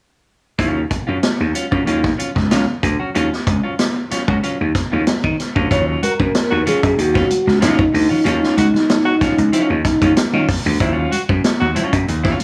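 A straight 4/4 funk groove at 94 BPM in Eb minor starts at 0.6 s, with a punchy vintage drum kit and a growly, overdriven slap bass up front beneath a clean, picked electric guitar on an Ebm9 chord. At 5.7 s a mellow, flute-like tonewheel organ takes the melody through a fast rotary speaker as very quiet, damped congas join, and from 6.0 s a bright tenor saxophone adds a second line on Gb4 with vibrato and scooped notes. The mood is hypnotic and cool, set in light studio reverb, and the clip is cut from a longer piece.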